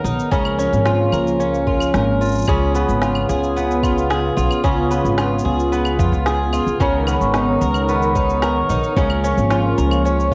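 Folktronica in D-flat mixolydian at 111 BPM, this warm, delicate clip is built on an up-front, fingerpicked twelve-string acoustic guitar whose boxy, shimmering, octave-doubled arpeggios carry tape echo, over a detuned sawtooth pad with chorus holding slow-attack chords and a woody, gut-strung pizzicato upright bass. A muffled, pitched-down electronic kick and a light kit of electronic shaker, claves and woody snare, re-recorded in a large room, keep a straight 4/4 pulse, while the chords move from Bbm7/Ab to Db7 and on to Cbmaj7. At 6.8 seconds a metallic, ringing vibraphone played with medium mallets and the motor off adds a second line through analog delay, all within a lightly reverberant home-cassette sound with vinyl crackle.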